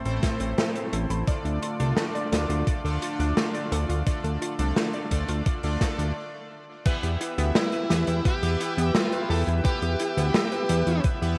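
A fat, detuned sawtooth bass and a thumpy, tape-warm electronic kick sit up front in this nostalgic, nocturnal 86 BPM synthwave excerpt, joined by a dark, smooth jazz drum kit with gated reverb, bold brassy synth stabs, round chorused pluck arpeggios with delay, and a shimmering pulse-width pad pumping in the background over Am and Dm, all bathed in bright 1980s-style plate reverb until a brief stop at 6.2 seconds gives way to Em and a compressed, distorted fuzz guitar melody entering at 7.6 seconds.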